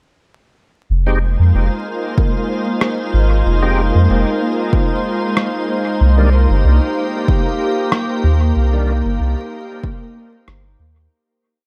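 Vinyl crackle sits over a light, digital ambience, framing a short, complete ambient dub piece in F minor at 94 BPM with a gently swung 4/4 feel, spacious and deep in mood. A round, soft sub bass enters first at 0.9 seconds and stays up front with a dub-style line, joined by a calm, organ-like pad whose pure, detuned tones carry slowly shifting chords through ensemble chorus and reverb, moving from Fm7 to Cm7 at 6.0 seconds. In the background, an overdriven tonewheel organ adds gritty, thick chord stabs, one shape moved in parallel, coloured by chorus vibrato, a slow rotary speaker and dub echo. Alongside it, a bubbling, resonant sawtooth texture steps randomly through its filter around a held high note, washed in chorus and reverb. The beat is sparse: a punchy, layered electronic kick re-recorded in a small room sits up front, while a muffled, tape-tinged rim click, sampler-style and pitched down, echoes through dub delay. 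The whole piece fades out from 7.7 seconds.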